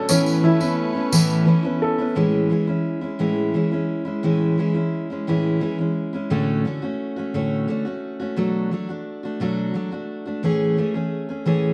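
This short excerpt from a gentle, nostalgic acoustic folk piece opens with a jumbo steel-string guitar, a chamber string section and a felt-muted upright piano sounding together, joined a moment later by a jingly, bright tambourine. The strings hold soft-attacked, floating bowed chords from a distance, while the piano's mellow, intimate arpeggios carry a slapback echo, with audible action noise and the character of thin felt. The tambourine stops at 1.4 seconds and the strings and piano fall away by about 2.2 seconds, leaving the picked guitar alone to carry the accompaniment until 11.7 seconds. Up front and full-bodied, with fresh strings and the occasional finger squeak, the guitar moves in 6/8 through Aadd9, Amaj7, Dmaj7/A and Bm7 before returning to Amaj7. The piece was recorded outdoors with little reverb, giving a dry, open-air sound.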